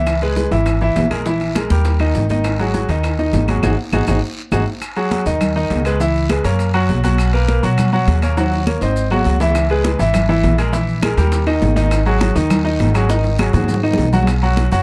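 A straight 4/4 salsa groove at 203 BPM drives this fiery, danceable G# minor excerpt, led up front by a brilliant, intimate upright piano with audible action noise and long sustain and a thumpy, pizzicato steel-string upright bass, while background percussion fills in: thin-skinned, high-tuned congas; round, low-tuned bongos that drop out between 4.6 and 9.6 seconds; ringing, distant timbales; woody vintage claves; a raspy guiro; and grainy maracas, with a band accent at 3.6 seconds and recurring drum fills, set in light reverb within a dark production.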